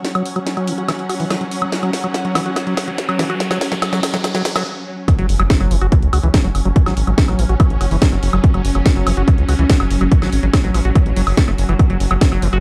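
Dark, lightly reverberant production carries this driving, psychedelic trance excerpt, opening with a build-up in which a squelchy, resonant liquid acid bass riff sweeps its filter over a tense, warbling drone of sustained chords, lush bowed strings in the background and a drum fill of cracking snare, hi-hat and woodblock. A very quiet electronic riser enters at 2.5 seconds, the strings stop at 4.7 seconds, and a brief stop gives way to the drop at 5.1 seconds. There a heavy, tape-tinged kick drum and a round, deep, up-front analog bass arrive with a faint impact, while the drone and the chorused, dub-echoed acid bass keep pumping along.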